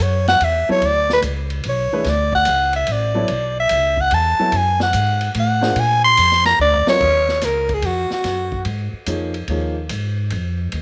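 A swung 3/4 pulse at 145 BPM carries this spiritual, searching modal jazz fragment, cut from a longer piece. A woody pizzicato upright bass and a vintage drum kit with dark cymbals, a high-tuned snare and a punchy kick support a smooth baby grand piano that comps through Bm9 and A# in B dorian. An up-front, close-miked soprano saxophone solos with a raspy, growling subtone and vibrato until a drum fill at 6.6 seconds ushers in a shift to Eb minor and an Eb9sus4 chord at 7.0 seconds, after which the saxophone drops out at 8.6 seconds, all in a light reverb.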